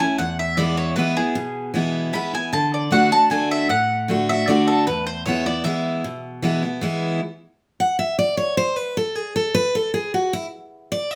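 A driving three-beat bluegrass pulse opens this rustic fragment of a longer piece, with a picked mandolin carrying the melody until 6.2 seconds, its doubled strings sounding woody and up front over a bright, full-bodied dreadnought guitar that picks the accompaniment through E and D chords. At 7.2 seconds the guitar takes a solo over open space with the chords dropping away, playing on to the end at 11.2 seconds. A wet studio reverb wraps the close, present sound in a generous sense of room.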